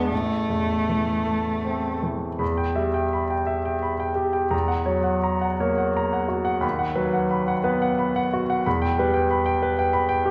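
A 6/8 pulse, stretched and held back with rubato, carries this solemn, yearning romantic duo for cello and grand piano, cut from a longer piece. The bowed cello sings a rich, focused melody with vibrato only until 2.0 seconds, after which the bright grand piano, its action noise audible and its notes ringing with long sustain, carries on alone through chords moving from Em to F#7/E, B/D# and back to Em. Both instruments sit up front in a wet recital hall reverb that gives the music a churchly glow.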